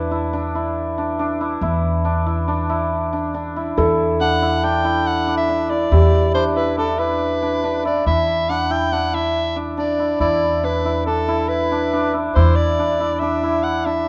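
A dark, warm production with light reverb frames this restless, urgent piece of contemporary chamber music, cut from a longer work and moving at 140 BPM in a straight 5/4 in E minor. Up front, a shimmering, ringing hammered dulcimer plays arpeggios over a woody pizzicato upright bass on steel strings, while a soft, felt-muted upright piano with audible action noise adds a mellow second line in the background until 7.8 seconds. A breathy, whispered soprano saxophone enters at 4.2 seconds with an intimate, pop-style solo melody carried by vibrato and a soft attack, and the harmony moves from Em7 to E7(no3) at 8.1 seconds.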